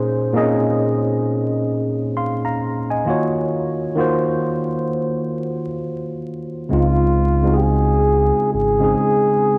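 A slow, swung 4/4 groove at 66 BPM sets a cosy, mellow lo-fi hip hop mood in Db major, in a short cut from a longer piece. A worn, slightly out-of-tune tine electric piano carries the accompaniment from the start, lightly overdriven and muffled by cassette tape and a low-pass filter, moving from Bbm11 to Ebm7 before settling on Dbmaj9 at 6.7 seconds. At that point a breathy flugelhorn enters up front with a dark, whispered, intimate jazz solo, using light vibrato and scooped notes over a narrow range. A deep, full sine sub bass with an octave joins at the same moment, sustaining beneath the harmony until 8.9 seconds. The home cassette recording, dusted with vinyl crackle and set in a lush hall reverb, gives the whole piece a cosy intimacy.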